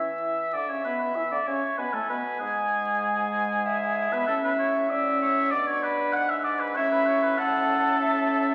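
In a straight 4/4 at 96 BPM, this brief, spirited excerpt from a quick classical-period movement for wind quintet moves cheerfully in A major, tuned to A4 = 439 Hz. The concert flute carries the melody, its pure, expressive tone shaped by vibrato and a soft attack. The oboe, clear with light vibrato, sits up front with the second line. The clarinet adds a bright, present accompaniment, joined by the dark, smooth-topped French horn. Beneath them the bassoon supplies a warm, distant bass with a touch of vibrato. Every part plays from 0.0 to 8.5 s over a progression that settles on E before turning to A, G#m7b5 and back to A, all heard through a reverberant recital hall and the crackle of a very old 78 rpm record.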